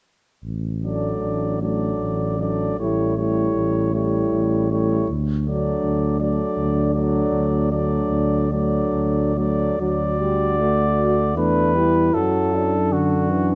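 Up front, a cornet carries the melody in a tender, hymn-like classical passage for brass band, a fragment cut from a longer piece that moves in a gently flexible triple time. A dark, close-miked tuba sounds first at 0.4 s and anchors the low end, while a mellow French horn section with light vibrato joins at 0.8 s to sing a second line beneath the cornet. At the same moment a vintage-toned euphonium with vibrato settles into the background as accompaniment, alongside a punchy trombone that adds light vibrato of its own. The harmony rests on D/A and moves to A7 and D. The passage shifts into a new section at 9.8 s, and the harmony arrives on D/F# at 12.1 s. A moderate recital-hall reverb and a dark, warm production give the ensemble an intimate glow.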